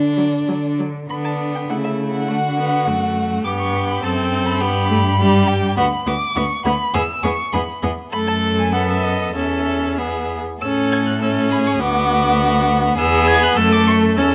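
A rich second violin and an expressive cello with portamento open this cheerful, graceful classical-period string quartet movement in a rubato 2/4, joined at 0.2 s by a smooth, close first violin carrying the melody over a warm viola accompaniment, every part bowed with vibrato in a moderate recital hall reverb, until the passage breaks off at 14.3 s.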